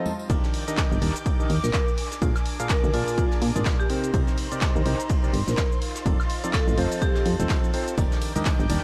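A light reverb and studio ambience give this echo-heavy piano house passage a roomy sheen. It is an uplifting, joyful piece at 125 BPM in Eb major, with a swung sixteenth feel, cut from a longer work and dropping in at 0.3 seconds. An up-front, dry, punchy electronic kick and a round, fast-attack FM bass anchor the groove. The bass pumps with sidechain compression as the chords move through Ebmaj7, Bb7, Cm7 and F7. Around them, an analog drum machine re-recorded in a small room adds cabasa, handclaps, hi-hat, ride and woodblock through dub echo, while a vintage brush kit with dark cymbals and a rolled-off top sits in the background. Tambourine and congas appear only briefly near the start and return at 8.0 seconds. A hollow, percussive organ stab carries the riff with lush chorus, sidechain pumping and dub echo. A distant, woody violin section holds sustained chords, and a very quiet, nasal chamber string section with gut-string tone adds texture beneath it. 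From 1.6 to 7.2 seconds, a bright, ringing vibraphone played with hard mallets floats a short melody in the background, its slow motor vibrato trailing into dub echo.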